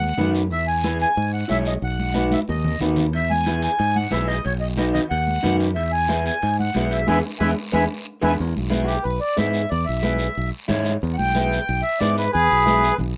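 A rough home-demo mix with light reverb carries this sunny, danceable cumbia, cut from a longer piece, where a reedy, vintage-toned accordion sits up front with a bright, direct fingered electric bass beneath it. Dark, slightly broken-up electric guitar fills out the accompaniment, while high-tuned, saturated congas and a raspy, close guiro keep the groove, and ringing metal-shell timbales join distantly from 3.1 to 8.3 seconds. After a band accent and a clean guitar fill, the accordion takes a solo from 8.4 seconds.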